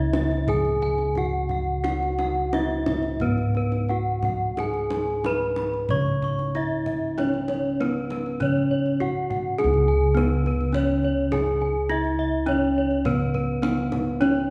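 A steady, straight 4/4 pulse moving between 88 and 104 BPM carries this serene, shimmering Javanese gamelan excerpt in C# slendro, where a ringing bronze metallophone struck with a wooden mallet sits up front on the melody, a second bronze metallophone played with a horn mallet spins paired-tuned arpeggios with beating shimmer in a boxy, warm space, round bossed gongs anchor the bass, and a tight, distant kendang played with hard hands drives the percussion, all within a resonant hall reverb of 1.5 seconds as the music shifts to a new section at 9.6 seconds.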